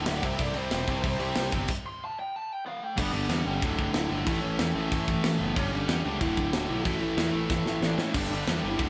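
Driving straight 4/4 at 186 BPM, this rebellious, energetic punk rock piece has a tight distorted guitar and a bright overdriven guitar tucked in the background picking riffs over growly fuzz bass and an up-front metal drum kit with a tight kick and rolled-off top, while a biting lead guitar solos from the start until a stop at 1.7 seconds, a new section begins at 3.0 seconds, and a drum fill lands at 7.5 seconds, the band heard live together in a moderate stone room.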